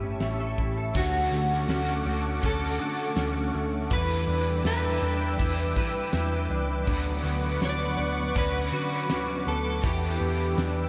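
A straight, unhurried 4/4 pulse carries this floating, dreamy stretch of dream pop, cut from a longer piece, as a loose indie drum kit settles in at 0.2 seconds with a punchy kick, fat snare, hi-hat, tambourine and shadowy crash cymbals ringing in a pumping studio room. Underneath, a vintage muted electric bass, picked, amped and round with a foam-damped thud, sits a touch forward in the mix. A thick, detuned sawtooth unison pad with a slow attack holds sustained chords up high through chorus and shimmer reverb, while a clean, compressed semi-hollow guitar plays fingered arpeggios bathed in ensemble chorus, diffuse ambient delay and shimmer. From 0.9 seconds a bright, overdriven semi-hollow guitar adds picked accompaniment through harmonic tremolo and subtle chorus, and at 1.0 seconds a dark, slightly broken-up lead guitar states the melody with analog chorus, ambient delay and shimmer. 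The harmony drifts from Dmaj7 through Em7 to Bmadd9/D and back to Em7, and a long, lush hall reverb soaks the whole mix in a hazy glow.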